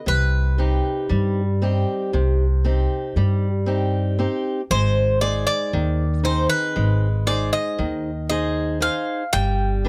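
Greek folk in 9/8 at 117 BPM, this short excerpt from a bouzouki band carries a melancholic, reflective mood as the harmony moves from C minor to A-flat at 4.7 seconds. The bright, metallic Greek bouzouki leads the melody, its double strings partly octave-doubled, while a picked acoustic archtop guitar with old strings gives a dark, woody accompaniment and a pizzicato upright bass on gut strings adds a thumpy low end. All three sit up front in a close, detailed, nearly dry recording.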